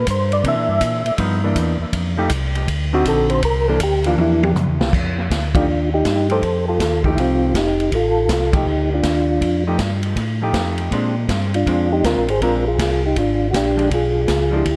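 An echo-heavy mix with light small-room reverb frames this greasy, bluesy soul jazz organ trio excerpt, swinging in 4/4 and cut from a longer piece. A soft, flute-like tonewheel organ with second-harmonic percussion, chorus vibrato and a slow rotary speaker carries the melody and solos through the opening. Beneath it, a round, dark second organ holds the bass and a clean, fingered hollow-body electric guitar comps, while an acoustic drum kit with a punchy kick and medium-tuned snare plays a fill at 4.2 seconds ahead of band accents at 5.5 and 8.5 seconds, over changes built largely on ninth chords.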